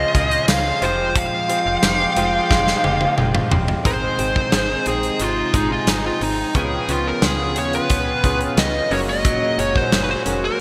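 1980s-style pop in Ab major at 89 BPM, nostalgic and glossy, cut from a longer piece, with a dark, fuzzy lead guitar up front carrying the melody over a big acoustic drum kit drenched in gated reverb, a snappy FM bass with a metallic attack, a polished grand piano, a clean direct-recorded guitar riff with subtle chorus, a lo-fi overdriven garage guitar kept very quiet, and a bright, evolving sawtooth pad in the background. After a drum fill from 2.5 seconds, the music moves at 3.9 seconds into a lead guitar solo as a detuned, warbling polysynth enters with punchy filter-plucked stabs. The chords shift from Dbmaj7 and Fmadd9 to Ab, Db7 and Gbadd9, all set in a lush hall reverb with bright digital production.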